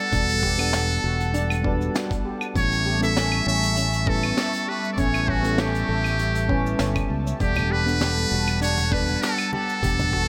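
Sunset chillout in E dorian at 99 BPM, this wistful excerpt sets an up-front, buzzy metal-muted trumpet with tape echo as the melody over a round FM electric piano treated with chorus, phaser and echo, a breathy detuned pad, steel pan arpeggios played with soft rubber sticks, and a fingered electric bass moving through Em11 and A7. A gritty, overdriven electronic kick sits beneath a small-room brush kit of high-tuned snare, hi-hat, cabasa and claves. Very quiet, close and dry congas join at 7.6 seconds, followed at 7.8 seconds by a dark, wind-like tuned noise texture, all within light reverb.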